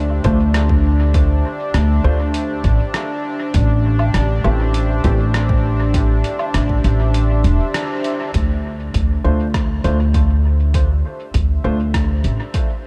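Ambient dub at 100 BPM with a spacious, deep mood, built on a chorused analog pad holding sustained chords from D7(no3) to Am7 under a growly, woody upright bass that sits up front and a punchy, layered electronic kick. A lo-fi sampler-style kit adds muffled hi-hat, rim click and woodblock with dub echo, while a slightly detuned background upright piano with audible action noise drops echoing stabs. The kick drops out from 7.1 seconds, the band hits an accent at 7.7 seconds, and the smooth sawtooth pad fades in from 8.3 seconds as the section changes, all in light digital ambience in this cut from a longer piece.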